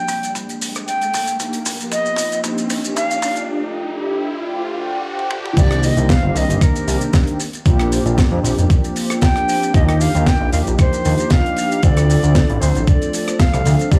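This sensual, sleek nu-disco excerpt opens with an airy jazz flute carrying the melody, softened by a low-pass filter and tape echo, over mellow synth brass chords that sound round and dark, with chorus and a sidechain pump. An electronic riser and filter sweeps on the flute and synth drive a build-up, while a tight funk drum kit with a high-tuned snare plays fills among its hi-hat, shaker, rim clicks, toms and crash. A short break arrives at 3.5 seconds, and at 5.6 seconds the drop lands as a fat, nasal analog bass and a thumpy, sampler-style kick join up front. The swung groove moves through lush jazzy chords such as Ebmaj9 and Cm9, with the flute's expressive vibrato floating above. The overall sound is dry and gritty, with transformer saturation and a small room ambience.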